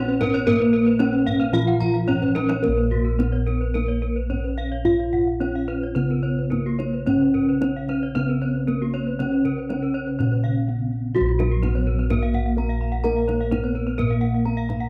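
Captured at home on cassette in a small room with light reverb, this brilliant, hypnotic Balinese gamelan excerpt sets a boxy, wooden-mallet bronze metallophone melody over mellow, padded bossed gongs up front in the bass, while a dry, close-miked metallophone accompaniment drops out from 2.6 to 7.1 seconds, two horn-mallet metallophones spin bright, airy arpeggios with shimmering paired-tuning beats, one of them through tape echo, and a deep kendang played with soft hands sits in the background, adding a drum fill at 2.1 seconds.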